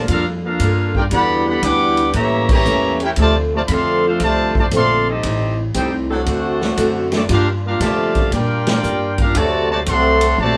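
A swung eighth-note feel in 4/4 carries this sultry big band swing piece, cut from a longer performance, with the drum kit sitting distant and roomy behind a medium-tuned snare, punchy kick and dark cymbals across crash, hi-hat and ride. A pizzicato upright bass adds a woody, thumpy foundation, while a picked steel-string acoustic guitar plays warmly in the background, with an audible finger squeak. Up front, a tight trumpet section states the melody with a brilliant, vintage tone and light vibrato. Beneath it, a dark, distant trombone section shapes a second line, and a very quiet saxophone section holds sustained chords with its own light vibrato. The full band hits accents at 2.4 and 8.6 seconds over a minor-key progression moving from Gm9 through A7b9 and Am7b5 to a closing D7, all heard together in one room with moderate studio reverb.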